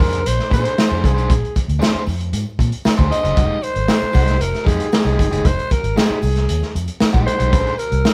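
A straight 4/4 funk groove at 116 BPM drives this sly, funky excerpt in F dorian, anchored by a crunchy breakbeat drum kit whose saturated kick, snare and hi-hat sit up front with a rolled-off top, a tight kick and a medium-tuned snare. Beneath it, a vintage fingered electric bass stays dark and round, its foam-muted tone landing punchy and amped between F1 and Bb2. A biting overdriven guitar supplies picked accompaniment as the harmony moves from Bb9 to Fm9 at 3.4 seconds and back to Bb9 at 7.5 seconds. Out front, a breathy alto saxophone carries the solo melody between Ab4 and Eb5, raspy and gritty with vibrato and a smooth top. A very quiet, jingly tambourine joins at 0.3 seconds. Light reverb frames the band as if playing live together in one room.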